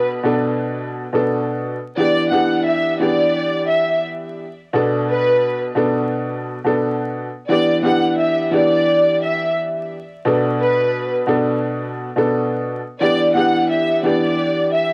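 A lush, bowed violin section with vibrato and a dark sul tasto tone carries the melody over a worn, slightly detuned upright piano with woody, short-sustained accompaniment in this moody, swung hip hop excerpt, both parts sitting up front through a cassette-tape haze with vinyl crackle and a moderate booth ambience as the harmony rocks between Bm7 and Em7.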